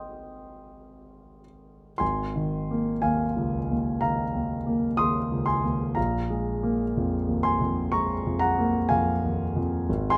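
Close, intimate and lightly reverberant, this luminous, hazy fragment of impressionist classical solo piano, cut from a longer piece, features an up-front vintage concert grand with deep bass, smooth tone and audible action noise, drifting in rubato 4/4 at 50-64 BPM in Ab major (tuned to A4 = 438 Hz) through Abmaj7 and Ab69 harmonies before moving to Bb5 at 6.0 seconds.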